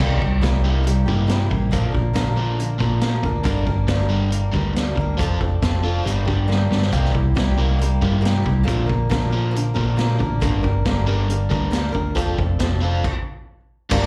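This folk rock and heartland rock excerpt has a reflective, dusty mood and moves at a steady, straight pulse, heard as a live gig through a venue's PA with small-room club reverb around it. A boxy, picked swing-style acoustic guitar plays accompaniment while a bright, overdriven, double-tracked electric guitar carries the riff, both touched with slapback echo. Underneath, a round, dark hollow-body bass sits prominently beside a vintage drum kit with a high-tuned snare, punchy kick and dark cymbals, which plays a fill at 6.5 seconds. The progression cycles through C7, Bb, Gm and F6 before the band hits a stop at 13.0 seconds. At 13.9 seconds a reedy electric piano with fast tremolo, a shouting tonewheel organ on slow rotary and a faint, jingly tambourine appear for a brief moment as the clip is cut.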